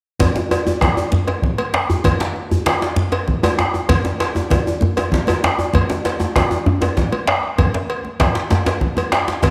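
A wet, echo-chamber reverb surrounds this short cut from a longer West African traditional drum ensemble piece, which moves in a driving, earthy 12/8 at 130 BPM with a straight feel. Two djembes play from 0.2 to 9.5 seconds: one is deep and close, the other medium-tuned with metal rattles and set up front in a large room. Around them sit a dark, distant bombo, bright, high-tuned congas struck with hard hands on damped, thin skins, and a metallic cowbell ringing in a live room.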